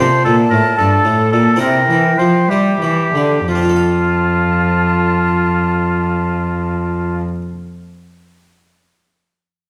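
A moderate recital-hall reverb surrounds this short, dance-like and radiant passage from a baroque-style sonata movement in F major, moving in a straight 12/8 at 59-78 BPM (dotted quarters) and slowing down over its first 3.5 seconds as the harmony moves from F to C7 and back to F. An airy silver concert flute with vibrato and a soft attack carries the melody high above a smooth-topped oboe second line that sits up front, while a rich, bowed gut-string cello supplies the bass. A brilliant, plucked Italian-style harpsichord with octave strings fills in the accompaniment and rings on alone until 7.5 seconds after the other parts stop at 7.2 seconds.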